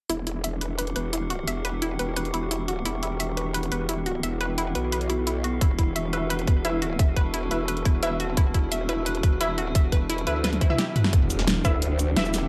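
A growling, saturated bass with a formant-filtered wobble drives this aggressive, mechanical clip of dark technical drum and bass at 174 BPM in E minor, up front beside a dubstep kit of huge snare, bright hats, cabasa and toms, with a tight electronic kick joining at 5.6 seconds. An eerie, wave-folded FM drone sustains chords through phaser and reverb while a round analog pluck arpeggiates under a filter sweep and delay, and from 6.1 seconds punchy, detuned orchestra-hit-like stabs arrive with a cassette-tape tint. A drum fill and background swell build toward a drop and impact at 11.1 seconds before the fragment cuts off.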